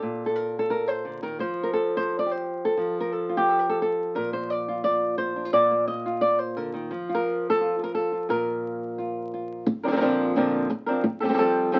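Flamenco in B-flat major, fiery and festive, moving at a brisk 174 BPM in a straight 4/4 feel. A lone acoustic flamenco guitar carries the whole piece, fingerpicked and placed up front, its dark tone ranging from Bb2 up to Eb5. The harmony moves between Bb and Fadd9, with a brief chordless stretch at 6.9 seconds before settling onto a bare Bb5 and then Bbadd9. A new section begins at 9.7 seconds and returns to Fadd9 before the fragment breaks off, having been cut from a longer piece. The sound carries the crackle and patina of a very old 78 rpm record, set in a small room with a moderate, short reverb.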